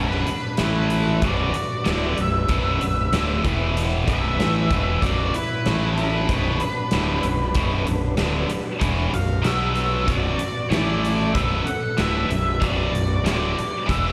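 Blues rock in a power-trio vein with a southern rock lean, this heavy, smoky excerpt is heard as a live gig through the venue's PA, with club reverb and small-room ambience. A growly, punchy fingered bass with fuzz and overdrive sits up front beside a tight, bright distorted rhythm guitar, double-tracked and picked, that drives a riff with slapback echo. The huge arena drum kit comes in at 0.1 seconds, its fat snare and punchy kick filling a pumping, hall-like room, with hi-hat on top. Over this, a dark octave-fuzz lead guitar carries the melody with slapback echo, while a smooth overdriven second lead, also dark, stays in the background below it. A very quiet percussive tonewheel organ holds sustained chords, its key click, third-harmonic percussion, chorus vibrato and slow rotary speaker adding a full, lightly driven glow. The harmony circles on B minor, dipping briefly to A5 and E5 before returning home.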